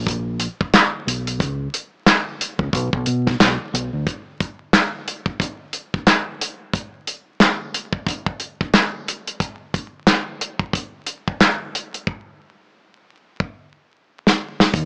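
A soul drum kit with a tight kick, medium-tuned snare, handclaps and hi-hat sits up front with a rolled-off top through this gritty, dark boom-bap hip-hop excerpt at 90 BPM with a swung 16th feel, entering just after a deep, round, punchy fingered electric bass with tube saturation that opens the piece, drops out at 4.0 seconds and returns briefly at the close, while a drum fill runs from 12.1 to 14.7 seconds, all in a dry, crackling, small-speaker sound.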